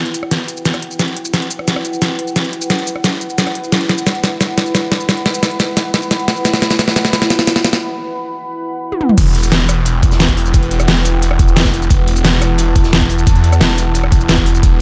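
Driving straight 4/4 at 176 BPM, this dark technical drum and bass excerpt in E minor builds from the start on a deep, moody sawtooth pad with chorus and sidechain pumping, holding an E minor chord beneath an up-front dubstep kit of deep snare, crisp hats, rim clicks, shakers, toms and crash, with a drum fill running through the build-up and a break at 7.8 seconds. At 9.2 seconds the drop lands, bringing in an overdriven, knocking electronic kick, a gritty, saturated breakbeat kit tucked in the background, and a snarling, growling saw bass with distortion and a moving notch that sits bright and up front. The feel is futuristic and mechanical, set in light digital ambience.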